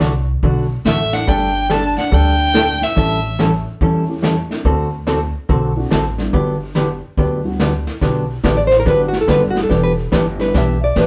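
Down-home and cheerful, this swung country and western swing excerpt at 142 BPM in G major rides on a clean, compressed hollow-body electric guitar up front, a thumpy gut-string upright bass and a brushed drum kit with a punchy kick, while a bowed fiddle with light vibrato carries a clear melody from 0.9 s beside a fingerpicked nylon-string guitar with audible finger squeak that returns at 8.6 s for a solo, and a mellow, boxy upright piano sits in the background from 4.1 s, the band playing live in one room with wet studio reverb.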